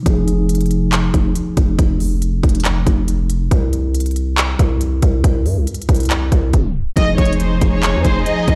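A growling, buzzy 808-style bass sits up front with a hard-clipped, crisp trap drum kit of kick, hi-hat and handclaps in this brooding, menacing half-time trap excerpt in F minor at 139 BPM, where a mellow tine electric piano with lush chorus plays until 3.5 seconds and returns at 6.9 seconds, a tape stop hits at 6.5 seconds, and from 7.0 seconds an expressive, vibrato-rich violin melody with delay plays over smooth, focused symphonic string chords, all set in a large studio reverb as if played on a big sound system in a bare room.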